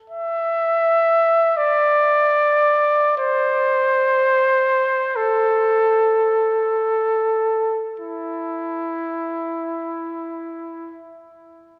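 Drenched in a wet cathedral reverb with a long 4.4-second decay and given a dark, warm production, this fragment of a classical piece features a lone mellow trumpet, placed up front, that plays from 0.1 to 11.0 seconds between E4 and E5, with light vibrato and a smooth top. In a free, rubato 6/8 at a very slow pulse of 17 to 42 BPM, tuned to A4 = 443 Hz, the music slows down over its first 8 seconds before moving into a brief new passage. The mood is yearning and lonely.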